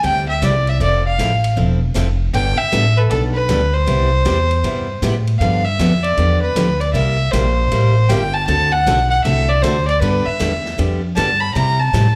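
Fiddle, acoustic guitar, upright bass and drums all start together in this playful, down-home stretch of western swing, cut from a longer piece and running about 12 seconds at 156 BPM in 4/4 with swung eighths in C major. Up front, a single bowed fiddle carries the melody with a reedy, gut-string tone and a slapback echo. The pizzicato upright bass sits just as close, woody and warm, while a bright, full-bodied dreadnought acoustic guitar picks the accompaniment, with finger squeak audible. The drum kit stays distant in the background, its dark hi-hat and ride cymbals and medium-tuned snare softened by a rolled-off top. The chords move from C through Fmaj7, Gadd9, Cmaj7 and G7 to C7, D7 and G before landing back on C at 11.6 seconds, the whole band heard as a live gig through the venue's PA with light club reverb.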